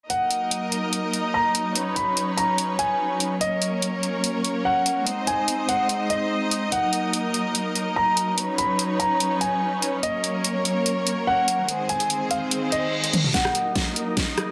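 A dense, heavily limited modern master sits in a lush hall reverb, giving this aggressive, heavy wobble dubstep excerpt a big but tightly packed sound in a half-time feel. An intimate grand piano carries the melody high in its range, its short sustain and audible action noise softened by a low-pass filter and trailed by digital delay. Beneath it, a rich, bowed string section holds smooth, vibrato-laden chords up front, pumping with sidechain and dulled by its own low-pass filter through a cycle of Eb minor, B add9, G flat and A flat. The layered drum kit, recorded again in a small room, pushes a huge snare forward alongside hi-hat, rim clicks and toms. At 12.7 seconds an electronic reverse cymbal rises into a drum fill, and from 13.3 seconds a build-up begins as a filter sweeps the piano and an overdriven, knocking electronic kick joins the groove.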